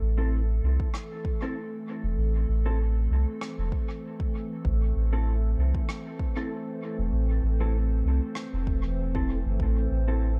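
A round, soft dub sub bass sits up front in this meditative, spacious ambient dub excerpt, beneath a warbling, nostalgic lo-fi pad of sustained, detuned chords with chorus and phaser, while clean, fingered electric guitar stabs drift through lush chorus and dub echo, a deep, layered electronic kick enters at 0.8 seconds, and a brushed rim click carries its own dub echo, all within a dark, small-room production.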